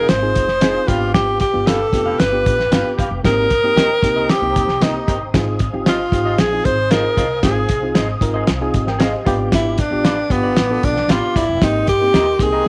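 Uptempo 1960s-style soul at 115 BPM in 4/4, this uplifting, danceable cut from a longer piece puts a breathy, close-miked tenor saxophone up front over a reedy electric piano with fast tremolo, a soft, flute-like tonewheel organ turning through a slow rotary speaker in the background, slightly broken-up electric guitar stabs, a woody, growly pizzicato upright bass and a muffled, cloth-damped drum kit with a fat snare, all moving through chords such as Fm7, G7 and Ab6 in light reverb.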